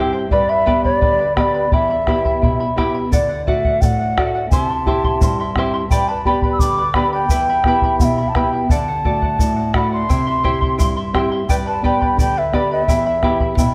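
A straight 2/4 pulse at 86 BPM carries this melancholic, wistful Andean folk piece in E minor, tuned to A4 = 439 Hz and cut from a longer work. A fingerpicked nylon-string guitar, small and up front, and a bright, shimmering charango with double strings, some of them octave-doubled, supply the accompaniment from the start. The round, acoustic bombo joins them, and a mellow large quena takes the melody from 0.3 seconds. The quena has an airy, wooden, end-blown tone with vibrato, soft attacks, rolled-off highs and a tape echo. A grainy egg shaker enters at 3.1 seconds, set low in the mix, as the chords cycle through G, E minor, D and C. The guitar adds a short fill at 13.2 seconds, and the whole sits in a moderate recital hall reverb with a dark, warm production.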